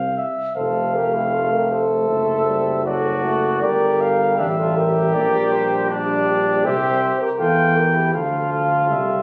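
Captured on a phone in a recital hall with moderate reverb, this short cut from a longer classical brass quintet piece moves with noble, stately rubato at 79 BPM: a dark, punchy trumpet carries the melody up front over a clear trombone in the background and a soft-attack tuba bass, while a distant flugelhorn with light vibrato adds a second line and a mellow, roomy French horn joins the accompaniment, both entering at 0.6 seconds.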